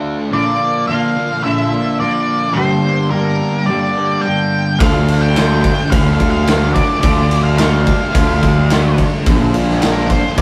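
A crunchy overdriven guitar and a thick fuzz guitar sitting darkly in the background open this melancholic, dreamy shoegaze and dream pop rock excerpt at 107 BPM in D minor, joined at 0.3 seconds by a distorted octave-fuzz lead guitar melody over Bb and Gm chords, before a growly, bright fuzz bass and a gritty, up-front garage drum kit with punchy kick, snare and ride come in together at 4.8 seconds as the harmony moves to Dm, all captured in a rough rehearsal-room sound with moderate reverb.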